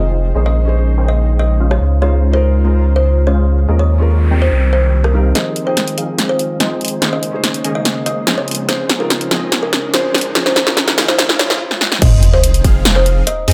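A woody, hollow kalimba melody opens this bittersweet, lush future bass excerpt at 144 BPM in a half-time feel in F minor. It rides over a soft, felt-muted upright piano with digital delay, a breathy, chorused pad with a slow attack, a detuned supersaw stab riff through a low-pass filter, and a thick, saturated sub bass, all pumping against the sidechain. Chords such as Bbm11, Dbmaj7 and Eb9sus4 give the harmony a tender, yearning colour. After a brief hit near 1.7 seconds, the big-room dance drum kit returns at 5.0 seconds, just as the sub bass drops out around 5.3 seconds. A very quiet noise sweep leads into a build-up where the kit plays a fill of snare, rim click, hi-hat and crash, with the snare, hats and cymbals through low-pass filters, while filter sweeps move across the supersaw and the pad. After a brief break, the drop lands at 12.0 seconds with an impact, the returning sub bass and a punchy layered electronic kick, as the piano and pad fall away. 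The mix has light reverb, with the bass and the punchy snare sitting up front.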